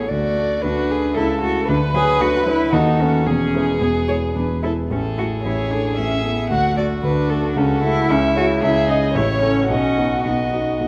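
From the first moment a warm, up-front grand piano accompaniment sits beneath three veiled, con sordino strings: a dark-toned muted violin carrying the melody with vibrato and portamento, a second muted violin and a muted cello shaping second lines with light vibrato, together giving this cheerful, lively fragment of a quick classical-period piano quartet movement in 3/4 a supple rubato feel, all set in a moderate recital hall reverb.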